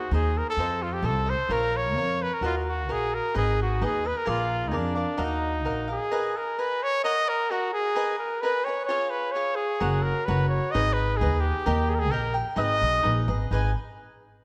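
A moderate scoring-stage reverb surrounds this passionate, dramatic mariachi passage in 2/4 at 130 BPM, taken from a longer piece and moving from Eb minor to G# minor at 6.1 seconds. A clear, classical-style trumpet carries the solo melody up front over crisp, picked acoustic cavaquinho accompaniment. A woody pizzicato upright bass with steel strings sits forward in the mix, dropping out at 6.0 seconds and returning at 9.8 seconds.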